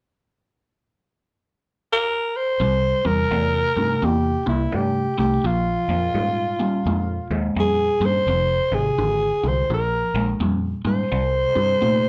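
A breathy, growling tenor saxophone sits up front from 1.9 s with a raspy, scooped jazz-style solo over a brooding, mournful electric blues shuffle at 84 BPM, joined at 2.6 s by a crunchy overdriven guitar riff colored with phaser and a round, dark fingered electric bass, all captured as a band playing live in one room with light reverb, moving through C7, Bb5 and Fm in this short section cut from a longer piece.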